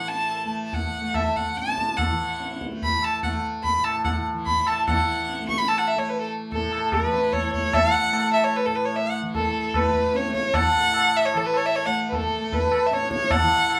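Radiant and serene, this Hindustani classical excerpt in raga bhupali on A moves in 7/4 at 148 BPM and speeds up throughout, with a warm, focused, bowed violin singing the melody up front with vibrato and a smooth top, over a softly plucked, buzzing, shimmering tanpura drone and low-tuned, ringing tabla entering at 0.1 s, all played live in one room and wrapped in a wet studio reverb.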